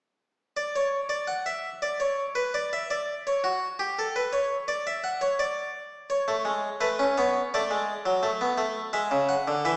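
Heard through a small-speaker sound steeped in the wet reverb of a recital hall, this joyful, stately fragment of a baroque-style two-part invention in D major at 84 BPM features a solo harpsichord, bright, plucked and Italian in style on a single set of strings, sitting up front from 0.6 seconds and moving through A, D and E7 in its final seconds.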